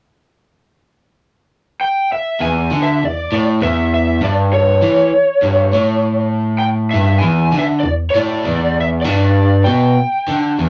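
A dark, overdriven lead guitar, picked through a small cranked amp, stands up front from 1.8 seconds, carrying the melody in this raunchy, gritty rock excerpt at 99 BPM in straight 4/4. At 2.4 seconds a bright, crunchy, double-tracked rhythm guitar joins with a low picked riff, also placed up front. The harmony moves from Em to A7 and then Em7, giving the short passage a bluesy grind. The sound is a rough rehearsal-room recording with tube saturation and a short, wet booth ambience that keeps the grit close and raw. The two guitars carry on until the cut just before 11 seconds.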